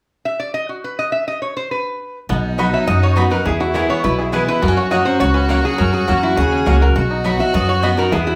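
Recorded live in one room with a moderate large-studio reverb, this driving, joyful bluegrass excerpt at 206 BPM in B major opens with a metallic, nasal lap resonator guitar carrying the slide melody up front, joined at 2.3 s by a twangy, percussive banjo also on melody, a clear, smooth fiddle second line with light vibrato, a full-bodied jumbo steel-string guitar picking the accompaniment, and a woody pizzicato upright bass up front, with round, double-string mandolin stabs entering at 2.6 s.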